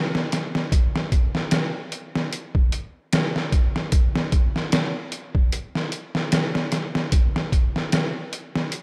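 A gritty, pitched-down sampler-style drum kit of thumpy kick, medium-tuned snare and hi-hat sits up front, compressed and overdriven, carrying a hypnotic, cinematic trip hop groove at 75 BPM in 4/4 with a light swing on the sixteenths, all set in light reverb and digital ambience across this 8.8-second cut from a longer piece.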